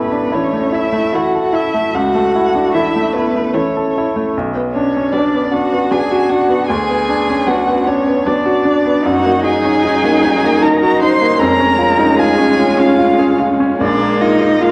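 A focused, vibrato-laden solo violin sings the lyrical melody up front in this tender, slow romantic movement for piano quintet at 76 BPM in a rubato 3/4, over a brilliant, polished baby grand piano accompaniment, with a full-bodied cello and a warm, distant second violin carrying supporting lines and a smooth-topped viola filling in from the background, the music settling into Db major from 9.0 s and heard through a recital-hall reverb and the warbling pitch drift of worn cassette tape.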